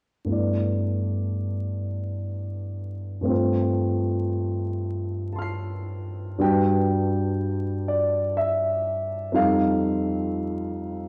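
A grand piano, open and long-sustaining up front, plays dreamy, hazy impressionist classical music alone at 60 BPM in a freely flowing, rubato 3/4, tuned to A4 = 439 Hz and drifting through lush chords such as G69, Fadd9/G, Gmaj7 and F9 in this fragment of a longer piece, all heard through a wet recital-hall reverb and worn, warbling old cassette tape with vinyl crackle and wavering pitch.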